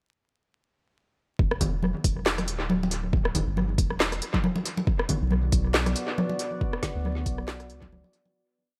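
Dark and cavernous, this short deep dubstep piece drops in at 1.4 seconds with a half-time, swung groove built from an up-front deep electronic kick, a deep house kit of woody snare, smooth closed hats, rim clicks and handclaps, and thick-skinned, damped congas that echo through analog delay. Beneath them a soft, round dub sub bass holds long dark notes with tube saturation, while a moody, detuned ambient pad enters at 5.3 seconds on a B minor chord, chorused and reverberant, as the track fades out from 6.0 seconds. The echo-heavy mix carries a layer of vinyl crackle.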